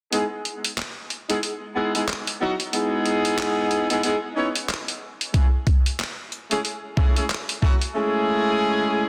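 A brilliant horn section with vibrato and octave doubling plays up-front stabs through sidechain pumping, a low-pass filter and dub echo over rootless C#m7 and F#m7 chords in this funky, swaggering 92 BPM glitch hop excerpt in C# minor with swung 16ths, backed by a gritty, pitched-down boom bap sampler-style kit of handclaps and hi-hat with a soft-clipped snare, and joined at 5.3 seconds by a thumpy, tape-warm electronic kick, the mix sitting in a lush hall reverb under a dense, heavily limited master.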